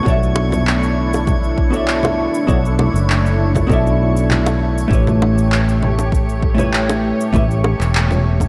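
Opening on a clean, compressed hollow-body jazz guitar with digital delay, a thick, detuned unison pad treated with chorus and phaser, and a glassy harmonics texture drifting in the background, this wistful sunset chillout excerpt in B minor at 99 BPM moves from Bm11 to A7 as a round, up-front fretless bass, a punchy layered electronic kick and electronic shaker, congas and handclaps enter at 0.1 seconds, tight, high-tuned bongos follow at 0.4 seconds, and the guitar drops out at 7.4 seconds, all set in a lush hall reverb with a dark, warm production.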